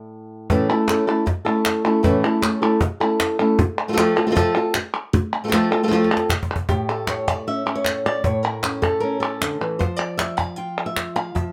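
Flamenco at 155 BPM in A phrygian dominant, fiery and intense, opens with the fingerpicked acoustic guitar alone before the woody cajon, with its faint snares and soft hands, enters at 0.5 seconds, followed at 0.7 seconds by crisp, saturated palmas hand claps, all up front in a moderate studio reverb, while the guitar's melody ranges from A2 to G5 with audible finger squeak and a drum fill at 5.9 seconds carries this excerpt into its second section.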